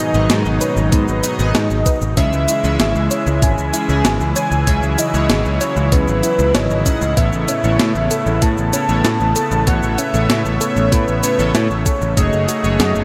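A velvety, smooth synth lead carries the melody of this nocturnal, cinematic synthwave excerpt, its dark sawtooth-and-square tone thickened with unison and a sub octave, and coloured by chorus, tremolo and analog delay. Beneath it, a brassy, nasal analog pad holds detuned sawtooth chords with a soft attack, filter sweeps and vibrato, pumping under sidechain compression. In the background, a soft, round pluck traces gentle arpeggios through chorus and delay, while a glossy retro polysynth adds pulse-width-modulated stabs. A bright, punchy picked electric bass sits up front from 0.1 seconds, joined by a clean 12-bit drum machine playing cabasa, hi-hat and a medium-tuned snare, and a thumpy, tape-warm electronic kick that enters at 0.9 seconds. The straight 4/4 groove moves through G#m, C#m, Aadd9 and F#madd9, all bathed in a lush hall reverb that gives the mix a dreamy atmosphere.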